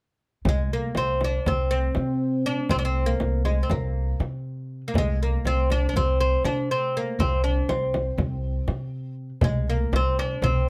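A 9/8 pulse at 241 eighth-note beats per minute drives this short cut from a longer Turkish makam ensemble piece, its mood longing and hypnotic. Plucked upright bass and a bright, fretless oud with doubled strings sit up front, the bass pizzicato and woody and the oud plectrum-plucked, ranging from Ab3 to a note just under D4, while a warm frame drum plays close and dry from 0.5 seconds. At 9.4 seconds a crisp metal-shelled darbuka joins in the background, struck with hard hands, and the whole passage sounds intimate, with little reverb.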